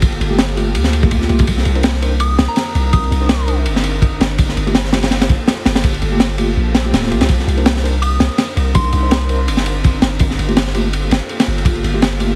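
A crunchy, gritty breakbeat kit of tight kick, high-tuned snare and dark ride drives this raw, nostalgic drum and bass and jungle excerpt at 165 BPM in C minor, swung on the 16ths and sitting up front beside a deep, sine-like 808-style bass with tube saturation. Behind them, an ethereal, airy pad holds sustained chords moving between Gm9 and Cm9, while a mellow tine electric piano adds stabs through dub echo from 0.3 seconds. A soft, pure, warbling FM bell carries brief melodic phrases around 2.2 and 8.0 seconds, a very quiet electronic swell passes just before the second, and heavy radio-style compression and vinyl crackle give the whole track a vintage, worn sound.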